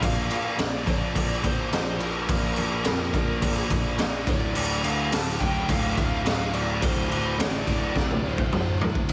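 This short hard rock excerpt in D minor opens with everything at once: a raw garage drum kit up front, several overdriven and distorted guitars, a grand piano holding down the bass, and a smooth lead guitar carrying the melody high above with a slapback echo. At 106 BPM in a straight 4/4, the mood is aggressive and heavy, with the harmony moving from Bb to Dm at 4.3 seconds. The drums sound small-roomed and gritty, pairing a boomy kick with a high-tuned snare under a rolled-off, saturated top, and they close with a fill starting at 8.0 seconds. Three very quiet picked guitars play riffs low in the mix, one crunchy, one tight and bright, and one double-tracked, while the piano adds an intimate, boxy bass line where its action noise can be heard. A light reverb surrounds the whole band.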